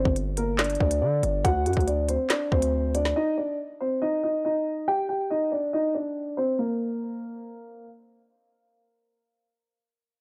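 A half-time drill groove drives this menacing hip hop fragment, with an electronic kit of hard-clipped kick, woody snare, crisp hi-hats and handclaps sitting up front beside a distorted, saturated 808-style bass whose sine tone carries a noise layer and a fast, decaying attack. Both stop at about 3.2 seconds, leaving a dark, boxy concert grand piano to carry its ominous melody alone through a low-pass filter sweep that runs until 6.6 seconds, with the piano sounding on until 7.8 seconds. The dry, gritty sound keeps every part close and raw, like a cut lifted from a longer track.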